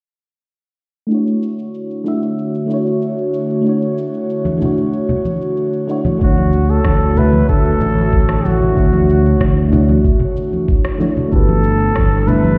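Smooth and relaxed, this sunset chillout excerpt in D major at 94 BPM opens at 1.1 seconds with a round, chorused FM electric piano under filter sweeps and a layered electronic shaker and rim click, adds an airy, breathy pad and low-tuned background congas, then at 6.2 seconds brings in a veiled, raspy bucket-muted trumpet with vibrato, scooped notes and delay, a growly up-front fingered bass and a gritty, thumpy kick, all heard muffled as if through a wall in a lush hall reverb, moving from Dmaj7 to G69.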